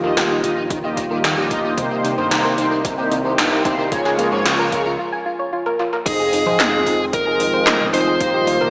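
A dark, distorted fuzz lead guitar takes the melody up front at 6.1 s in this moody, cinematic synthwave excerpt in F minor at 112 BPM, over gated 80s electronic pad drums with metallic hats, a punchy electronic kick, a fat, pumping analog bass, brassy synth stabs with phaser and delay, a soft, round arpeggiated pluck under a filter sweep, a smooth, detuned pad, and an overdriven semi-hollow guitar riff that plays until 4.9 s, all in a wet concert-hall reverb with a small-speaker tone.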